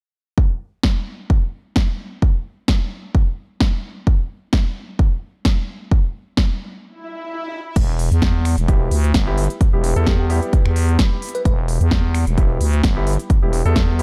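Swung sixteenths at 130 BPM in 4/4 drive this bouncy, aggressive bass house passage in E minor, cut from a longer piece. A punchy, tape-toned electronic kick sits up front from 0.4 s, joined by an overdriven dance kit of crisp hi-hats, snare, finger snaps and crash cymbal, both carrying small room ambience. After a short break and an electronic swell, a growling, thick FM bass arrives at 7.8 s on an E minor chord, gritty with tube saturation and sidechain pumping. Warm grand piano stabs with a deep low end follow, carrying delay and the same pumping, while a bell-like, sparkling FM electric piano adds a brief melody in the background through chorus, phaser and delay. The production is dark and dry, with little reverb.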